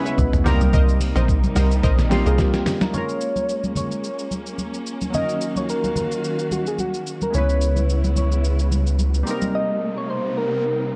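A deep, hypnotic amapiano cut at 109 BPM in Bb minor opens on detuned analog keys with chorus and a bowed string section whose chords pump under sidechain, joined by bright chorused and delayed pluck stabs and a round, dark log drum bass that drop out by 2.4 seconds. A muffled, pitched-down sampler-style trip hop kit with a thumpy kick and a drum fill leads into the second section, alongside saturated, hard-hand congas, while a gentle, keys-like FM synth lead carries the melody from 2.1 seconds through a Bbm7, Ebm7, Dbm7, Cm7 progression. A sine sub bass briefly underpins the groove from 7.3 seconds, and a background electronic riser climbs into a closing break in a dark, tape-saturated mix with little reverb.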